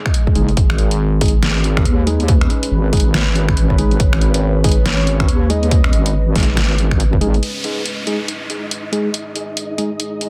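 A deep, saturated wobble bass sits up front in this cavernous, brooding excerpt of deep dubstep, its square-and-sine tone thickened with chorus. A swung, half-time groove comes from a punchy electronic kick and a layered kit of finger snaps, hi-hat and snare, both re-recorded in a large room. A mellow tine electric piano plays stabs through a low-pass filter and dub echo, while a dark, detuned sawtooth pad holds sustained chords with a slow attack, chorus and built-in reverb. Briefly, a breathy, flute-like lead with vibrato and analog chorus drifts in the background. When the drop ends at 7.4 seconds, a downlifter and a filter sweep on the electric piano come in, and a bright, flickering granular texture enters at 7.9 seconds. The dense, heavily limited master carries only light reverb.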